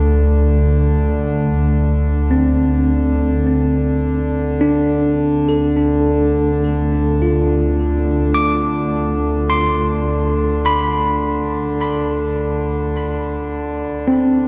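Dark, hall-soaked production with a long, wet reverb gives this melancholic, spacious ambient piece, cut from a longer work, a deep sense of room. A bowed double bass section holds a low, smooth note with gentle vibrato up front, while a reedy, breathing pedal harmonium sustains a mellow drone alongside it. From 2.3 seconds a clean tine electric piano adds arpeggios through tape echo over harmony that moves from Csus2/D to Dm6.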